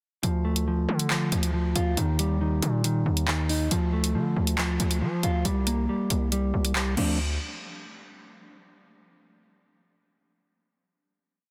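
Cold and menacing, this short half-time drill piece at 138 BPM in D phrygian sets a dark, clean electric guitar's warbly, filtered pedal-note arpeggio, looped like a sample over Dm, Eb and C5, against a heavy, saturated 808 bass with long sliding sub notes and an overdriven drum kit of bright skipping hi-hats, handclaps and crash, all up front in a dense, heavily limited mix with light reverb until the parts stop around 7.2 seconds for a final hit.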